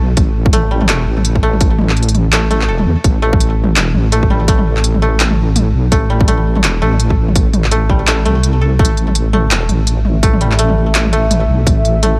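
A bright, woody koto, plucked with fingerpicks, spins arpeggios through this tense, cinematic excerpt of half-time drum and bass at 167 BPM, its dry tone roughened by vintage 12-bit sampler grit and trailed by delay. Underneath from the first second, a soft wobbling bass sits up front, blending detuned sawtooth and sine tones into a dark, compressed low end thickened with chorus. From 0.2 s, a hard-clipped, overdriven electronic kick punches forward alongside an electronic kit of handclaps, toms and smooth hi-hats, swung on the sixteenths over a half-time 4/4 feel. At 9.9 s, a moody ambient pad of sustained chords slips in behind everything else, its slow attack, chorus and built-in reverb breathing with sidechain pumping. The harmony rests on an A5 chord, and the mix itself stays close and dry, with little room sound around the up-front bass and drums.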